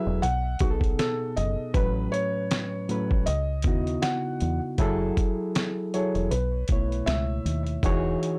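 Mellow and cosy, this lo-fi hip hop excerpt sits at 79 BPM in 4/4 with a swung sixteenth-note feel, cut from a longer piece. A felt-muted upright piano carries the melody between F#4 and F#5, its soft, intimate tone trailed by an analog delay until it stops at 7.6 seconds. Underneath, a reedy electric piano plays the accompaniment through its built-in speakers, lightly overdriven and bright, moving through chords from B7 and A69 to C#m11, F#m9 and B9sus4 before landing on Emaj13. A deep dub fingered electric bass, foam-muted, dark and round, holds the low end up front, while a sampler-style kit of hi-hat, thumpy kick and fat snare sounds compressed and muffled, as if re-recorded in a small room. The whole mix has a dry, gritty hardware character with transformer saturation and a light touch of reverb.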